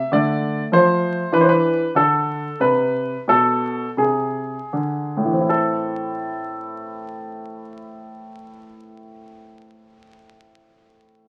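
Grave yet flowing, this cut from a longer baroque-style classical suite movement features a solo baby grand piano in A minor, moving in a slow, rubato 3/4 at 38-52 BPM. The piano sounds warm, natural and up front across a range from A2 to E5, slowing down through the opening 5.5 seconds as D minor and E7 give way to A minor, where a second section begins. Light reverb and the crackle of a very old 78 rpm record surround the playing.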